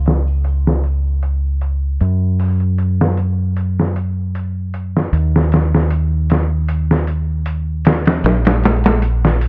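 A dark, round fingered electric bass opens this hypnotic, melancholic trip hop excerpt, played direct and amped up front in a low register, joined almost at once by a sampler-style drum kit with a pitched-down, gritty, compressed character and a medium-tuned snare. The kit's hi-hat, snare and kick are each softened by a low-pass filter, giving a tape-warm tone with a touch of studio ambience, while the mix overall stays quite dry. It moves at an unhurried 77 BPM in 4/4 with a light swing on the sixteenths, and both parts sit close and prominent.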